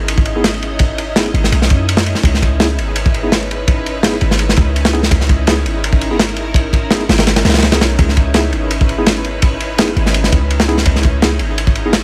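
A light reverb and small-room ambience frame this atmospheric, raw drum and bass excerpt at 167 BPM in C# dorian, resting on a single C#m9 chord throughout. A crunchy, saturated breakbeat kit sits up front with a punchy kick, medium-tuned snare and dark ride cymbal, while a deep, boomy 808-style bass with a noise layer and decaying notes anchors the low end. A silky, warbling string machine holds sustained chords through ensemble chorus, and a clean tine electric piano enters at 0.4 seconds with background stabs trailed by dub echo.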